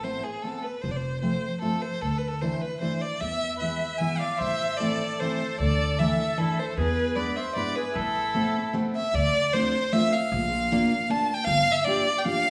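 Musette waltz, bittersweet and whirling, with a clear, focused bowed violin with vibrato carrying the melody up front over a full-bodied picked steel-string guitar with fresh strings and finger squeak, a woody, thumpy pizzicato upright bass, and a reedy, airy accordion second line from 3.6 to 8.7 s, all set in a wet recital-hall reverb as this cut from a longer piece turns toward D minor at 9.2 s.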